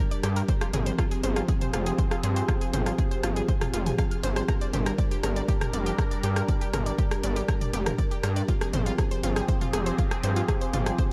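Melodic techno at 120 BPM in 4/4, this short cut from a longer piece feels driving and dark, moving from F minor to G minor and back. A gritty, distorted synth bass sits up front from 0.2 seconds, its aggressive sawtooth and ring-modulated edge pumping against an electronic kick that arrives at 0.5 seconds with a punchy, tape-warm thump. An analog drum machine supplies hi-hat, rim click and toms, its hats and toms ducking with sidechain pumping. Above, a bright, detuned sawtooth pad holds sustained chords with a resonant filter swell and chorus, evolving as it breathes with the kick. A round analog pluck spins arpeggios high in the register, its short decay trailing into delay and a filter sweep, all set in a light reverb.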